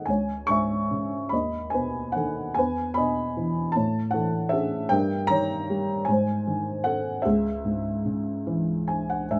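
A felt-muted upright piano plays alone from the first moment, its boxy, thick-felted tone sitting up close in a small room with a moderate, short reverb. This reflective, dark classical solo moves in a rubato 6/8 at roughly 48-52 dotted-quarter beats per minute in C# minor, tuned to A4 = 443 Hz, spanning C#2 to C#6 as the harmony passes from C#m through B/D#, A and D#7/G to G# before returning to C#m. A brief piano fill at 8.5 s closes this section, which is cut from a longer piece.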